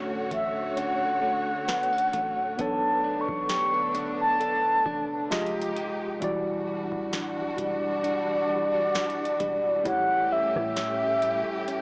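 This short cut from a longer contemporary R&B piece has a worn, warbling cassette-tape sound, with pitch drift, a small-speaker quality and light reverb. It feels smooth and romantic at 66 BPM in 4/4, with a gentle sixteenth-note swing in D major. Up front, a mellow, horn-like synth lead with a round, vintage sawtooth tone, soft attack, vibrato, chorus and a filter sweep carries the melody from 0.3 seconds. Beneath it, a bright tine electric piano plays accompaniment, and a lush bowed string section holds sustained chords with sidechain pumping. A clean, direct-recorded electric guitar adds compressed, picked arpeggios through tremolo, while a booming analog drum machine, re-recorded in a small room, supplies a deep kick, crisp snare, metallic hats and rim click. A long, sine-toned 808-style bass sits low in the background until 11.4 seconds, under harmony that moves from Dmaj7 through Bm9, Fm9 and Em9 to A7.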